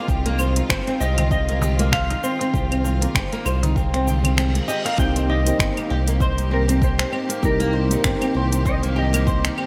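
A smooth, sawtooth-edged synth bass sits up front with sidechain pumping in this meditative, mystical organic downtempo piece, cut from a longer work, beneath fingerpicked flamenco guitar arpeggios with lush chorus and delay, clear bowed symphonic strings holding sustained chords, and a dark, clean lap steel melody that enters at 0.7 s. A deep electronic kick and a produced afro-pop kit of claves, finger snaps, hi-hat and shaker in gated reverb carry a swung 16th-note feel, while a crisp, very quiet darbuka plays until 5.0 s and a reverse cymbal arrives at 4.2 s, shortly before the kick drops out briefly. From 5.0 s a felt-muted upright piano, intimate and mellow with audible action noise and analog chorus, adds background accompaniment within a bright 1980s-style digital production and small-room ambience.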